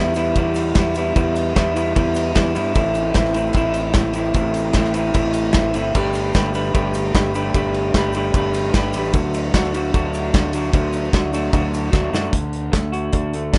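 A rough home-demo mix in a small, moderately live room, with the top end rolled off, gives this upbeat, carefree indie rock excerpt a homespun feel. An up-front electric guitar through a small old amp plays a slightly broken-up, compressed riff over Em, Am, Gadd9 and D, while a growling, overdriven fingered bass adds punch beneath it. A loose acoustic kit with dark cymbals, a tight kick and a pumping room sound drives things along beside a very quiet, grainy egg shaker, and a drum fill from 11.9 s carries the music into a new section at 12.3 s, where the shaker drops out.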